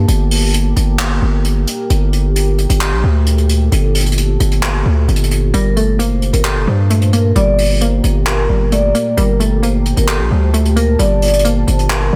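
A half-time trap groove from a distant, roomy brush drum kit with handclaps and hi-hat sits under a heavy, aggressive distorted 808-style bass that stays up front, while a deep, dark sawtooth pad holds a sustained Gmadd9 chord with chorus and built-in reverb. At 5.5 seconds a mellow, airy vibraphone played with soft mallets enters on the melody through tape echo and a low-pass filter, joined by a hollow, bouncy square-wave pluck with chorus and a filter sweep. This melancholic, menacing hip hop fragment is cut from a longer piece and carries a dense, heavily limited modern master.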